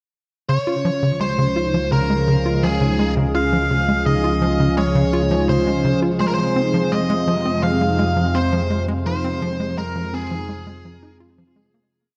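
A straight 4/4 pulse at 84 BPM carries this expansive, luminous piece of ambient, sequencer-driven space music in Db major. A tight, punchy sequencer bass loops a dark 5-step pattern that drifts against the bar through tape echo, while a soft-mallet vibraphone rings mellow 7-step arpeggios in the background. A detuned, resonant pad with ring modulation and chorus sustains slowly shifting chords, and an analog drone entering at 1.3 s holds the root with pulse-width modulation and tube saturation. Up front, a biting, overdriven electric lead guitar plays arching motif phrases through tape echo, and the mix sits in a moderate plate reverb until the fade-out from 8.1 s to 11.9 s.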